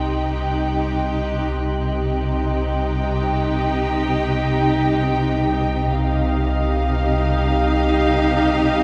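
Mysterious and uneasy, this cinematic fragment sets an intimate, soft-attacked violin melody over a woody second violin line in the background, rich viola accompaniment, ethereal glass harmonica chords, expressive distant cellos and dark double basses gliding with portamento, a deep, clean sine sub bass drone and a faint, even high violin texture, bathed in a cavernous cathedral reverb as the harmony shifts from Cm to Ebadd9/C at 5.9 seconds.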